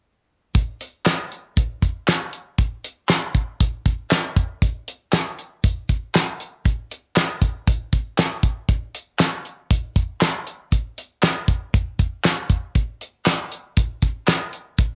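Slick and danceable, this short funk cut from a longer piece moves at 118 BPM in a straight 4/4, carried entirely by a damped 70s acoustic drum kit of kick, snare, hi-hat and handclaps that plays from 0.5 to 14.9 seconds. The kit sits up front with a dry, tight kick and a fat snare, its sound colored by cassette tape. Light reverb and the character of a home cassette recording frame the groove.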